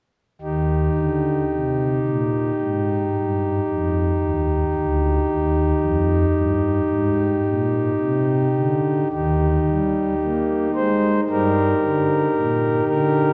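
A pipe organ on a smooth principal stop carries this classical chorale-style excerpt alone, its romantic voicing sitting up front and spanning D2 to C5 in Eb major, tuned slightly low to A4 = 437 Hz. At a slow 56 BPM in 4/4 with a rubato feel, the mood is majestic and reverent, the harmony resting on Eb before moving to Eb/G at 11.3 seconds, with a new section arriving at 9.1 seconds. A wet church reverb with a three-second decay surrounds the playing, which runs from 0.4 to 13.3 seconds.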